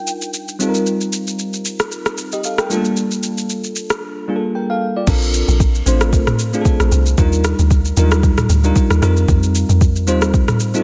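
A bell-like FM electric piano sits up front in this soulful, hypnotic amapiano excerpt, its sparkling, mellow chords shimmering with chorus and tremolo beneath a low-pass filter. A velvety synth lead of detuned sawtooth unison voices touches a single G5 in the opening 0.6 s, colored by chorus, vibrato, portamento and delay. The smooth R&B drum kit keeps a swung sixteenth feel with a soft kick, rim click, shaker, toms and crash, its electronic sound pushed forward and roughened by overdrive. A filter sweep runs through the first section over Ebmaj9, F9sus4 and Gm9. At 5.1 s a deep, round log drum bass arrives, dark and percussive, as the harmony moves to Bbmaj9. Light reverb and a digital ambience frame a dense, heavily limited modern master.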